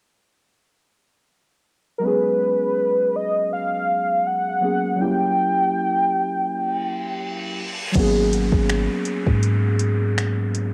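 Contemporary R&B at 81 BPM with a moody, late-night feel, this cut from a longer piece opens on 2 seconds of silence before muted, felt-like synth keys with a dark, intimate tone and a cassette-tape haze arrive alongside a velvety, detuned synth lead carrying the melody over G#m11 and F#7b9 chords. The lead drops out at 7.6 seconds after a reverse cymbal and downlifter enter at 6.8 seconds, and at 8.0 seconds a soft, round 808-style bass with tube saturation joins an overdriven electronic drum kit of soft kick, metallic hi-hats, finger snaps and crash. Light reverb and a digital ambience frame the home-cassette sound, with a gentle 16th-note swing.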